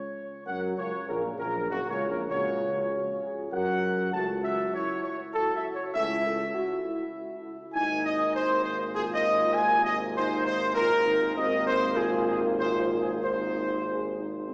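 Classical ceremonial fanfare excerpt at 99 BPM in 3/4, majestic and triumphant, where a mellow, softly attacked trumpet section carries the melody up front over dark, smooth-topped French horn chords, distant, punchy trombones in the background and a mellow solo tuba bass, all heard from further back in a reverberant church with a small-speaker sound as the chords move from Gb to A/C# at 4.1 seconds and Abadd9 at 7.8 seconds.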